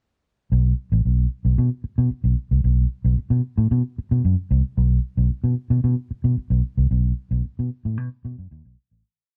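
A straight 4/4 funk groove struts along with a gritty, strutting mood in this short, complete piece. A vintage fingered electric bass plays entirely alone from 0.5 to 9.0 seconds. It works through a syncopated riff anchored on the downbeat, with muted ghost notes and chromatic approach notes. Its tone is dark, round and punchy, foam-muted and amped, sitting up front in the low register. The sound is dry and close, like a 1970s studio, with a touch of light reverb and some lossy compression artefacts. The whole piece is a breakdown, and it fades out from 6.9 seconds to the end.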